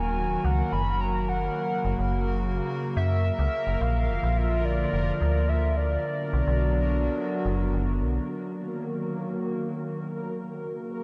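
IDM at 107 BPM in 4/4, eerie and melancholic, with a dreamy mix soaked in a huge ambient reverb, tuned to A4 = 437 Hz, as the chords move from Ebm through Gb, Bb and Bm. A warbling, detuned lead with chorus, vibrato and analog delay carries a nostalgic melody until 7.7 s, while a hollow, flute-like pad holds soft, slow-attack chords up front and a metallic FM bass plays fast-attack, decaying digital notes until 8.2 s. Deep in the background, a bubbling, resonant texture of random filter steps sustains a single Bb throughout with a long release, lingering into the closing section of this fragment of a longer piece.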